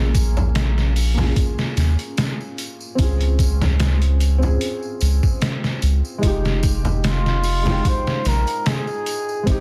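Trip hop in F minor at 74 BPM, melancholic and smoky, built on a lightly swung groove. A soft, felt-muted upright piano with audible action noise plays Bbm7, Dbmaj7 and Fm9 chords through harmonic tremolo and tape echo, over a deep, round dub sub bass with tube saturation. Gritty, pitched-down sampler drums with a thumpy kick sit up front, ringing tambourine and hard-handed congas play beneath them, and at 7.1 seconds a veiled, distant bucket-muted trumpet enters with a solo line through tape echo, all wrapped in a dense modern master with vinyl crackle.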